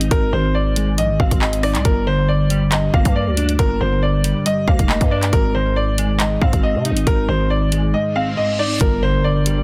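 A clear, up-front concert grand piano carries the melody through a delay over a dark, clean electric guitar with ensemble chorus, a growling, buzzy 808-style bass and a drill kit of hard-clipped kick, warm hi-hat, rim clicks and handclaps in an ominous, tense half-time groove. The dense, heavily limited mix drops into a silent gap at 7.9 seconds, where an electronic reverse cymbal builds to an impact at 8.8 seconds. There, a glassy, ethereal glass harmonica enters in the background with sustained chords as this cut from a longer piece ends.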